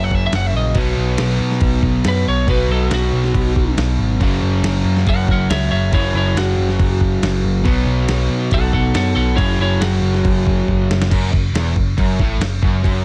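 A straight 4/4 groove drives this energetic, powerful hard rock passage at 139 BPM, cut from a longer piece. A compressed, sampler-style drum kit sits up front with a thumpy kick, medium-tuned snare and crash cymbal, its gritty tone giving the beat a dusty soul flavor, and it closes the opening stretch with a fill just before 11.1 seconds. Underneath, a growly, punchy overdriven bass is also up front, joined by two overdriven rhythm guitars playing the riff: a bright, cranked stack guitar and a dark, hollow-bodied semi-hollow guitar. Over the top, a slightly broken-up, compressed lead guitar with a warm tone and tape echo plays a solo through the first 11.1 seconds while the harmony moves between F# and B5. The lead then drops out as the chords shift to Esus2/4 for a brief closing section, all set in a light reverb.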